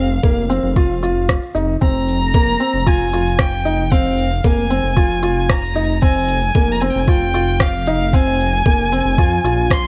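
A distant, vibrato-rich violin melody, a soft felt-muted upright piano riff with digital delay, and a deep, rumbling detuned saw bass with sidechain pumping open this moving, cinematic piano and strings electronica fragment together, joined at 0.2 seconds by a muffled, thumpy kick and at 0.5 seconds by a layered electronic shaker and rim click, all in a dry mix over a single minor chord.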